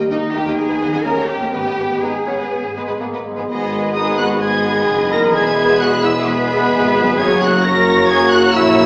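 Strings, horns and harp sound together from the start of this spirited, lively orchestral passage in G# minor. A vibrato-rich violin section carries the melody with a soft attack and a lush, expressive tone, over a second violin line, smooth violas, close cellos, double basses and thumb-plucked harp arpeggios that ring. A mellow French horn section holds sustained chords, and an airy flute section adds a distant second line. At a brisk tempo around 122 to 133 BPM in straight 4/4, the harmony moves from D# through G# minor and later to E and F#. The texture thickens as a bassoon joins at 2.0 seconds, and then trombones, tuba, a bright oboe and punchy, dark trumpet stabs fill in the brass and winds from about 3.5 seconds. Heard in a reverberant hall with a small-speaker quality, the passage is cut from a longer piece.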